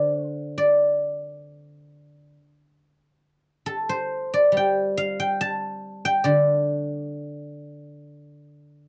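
A solo guzheng, plucked with fingerpicks, rings out silvery and up front in this elegant, contemplative piece of Chinese traditional music, moving freely in rubato around 68 BPM in 4/4 within the D yu mode. Spanning D3 to C6 across this 8.9-second fragment cut from a longer piece, the acoustic instrument sounds warm and close. The dry, 1970s-style studio recording carries only a light touch of reverb.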